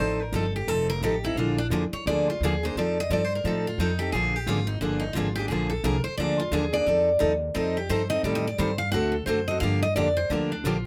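Two picked steel-string acoustic guitars and a pizzicato upright bass start together in this playful, swinging jazz manouche passage at 175 BPM in F mixolydian, cut from a longer piece. One guitar, a bright jumbo with fresh strings, takes a solo second line up front, while a full-bodied dreadnought picks the accompaniment over the woody, thumpy gut-string bass as the chords move between F7 and Bb7 before turning through Am7b5 and D7 to Gm7. A moderate club reverb places the trio in a club room.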